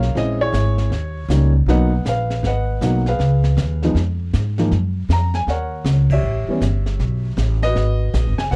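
The upright bass stands out most: plucked on steel strings, woody and up front, it carries the low end through this moody, smoky jazz piano trio passage in a swung 4/4. A mellow grand piano sits close as well, playing the melody over chords that run from Bbm7b5 and Eb7 through Abm7, Db7 and Gbmaj7 to A9 before settling back on Abm7. Behind them, a brushed drum kit in a small room keeps a smooth texture, with shadowy cymbals, a high-tuned snare and a boomy kick, its top end rolled off. The whole band hits an accent together at 6.0 seconds. With little reverb and a dark production, the recording feels intimate and dry, a short slice cut from a longer piece.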